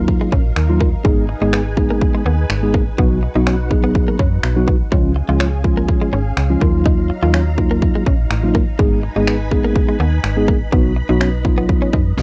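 Punchy, up-front electronic drums lead this dance-pop excerpt at 124 BPM in a straight 4/4, layering a fat snare and finger snaps over the kick with a driving, bittersweet feel. A snappy, slap-like FM bass with a metallic attack sits just as close, its digital tone pumping against the kick. A mellow tine electric piano carries the accompaniment through built-in speakers, joined by a direct-recorded clean electric guitar playing a picked, compressed riff with subtle chorus. Beneath them, a soft string machine holds silky sustained chords with slow attacks, ensemble chorus and sidechain pumping. The harmony moves through Ebmadd9, Abm, B and Db, and the whole takes on the slightly worn, dry character of a home recording on cassette, with little reverb.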